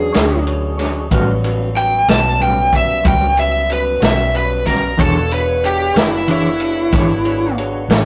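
An overdriven lead guitar through a small cranked amp sits up front, carrying a gritty, swaggering solo over a slow 12/8 blues at 62 BPM, moving over a rootless E thirteenth chord and an A thirteenth chord in this short excerpt cut from a longer piece. Beneath it, a fat tonewheel organ with key click, chorus vibrato and a slow rotary speaker holds sustained chords in the background beside a bright, clean tine electric piano, while a dark, clean, fingered electric guitar with tremolo adds accompaniment from 0.1 seconds. A round, foam-muted vintage bass and an acoustic vintage kit with punchy kick, medium-tuned snare and dark ride cymbal anchor the groove, all captured in a rough rehearsal-room recording with tube saturation and light reverb.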